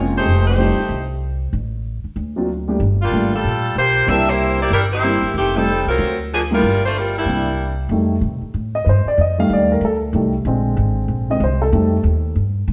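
This joyful big band swing clip, cut from a longer piece, opens with grand piano and upright bass together, and the saxophone section enters with the melody almost at once. The tempo is 188 BPM in 4/4 with a swung feel, set in F mixolydian over chords such as F9, D7alt, Gm7 and C9. The saxophones play as a clear, up-front ensemble with light vibrato and a jazz-style phrasing until about 7.8 s. The pizzicato upright bass has a woody, growly, thumpy tone on steel strings. The piano sounds warm and intimate, with its action noise audible. From 7.9 s the piano takes a solo as the harmony moves through F9 and Bb9, and the whole band sounds live in one room with a wet stone-room reverb.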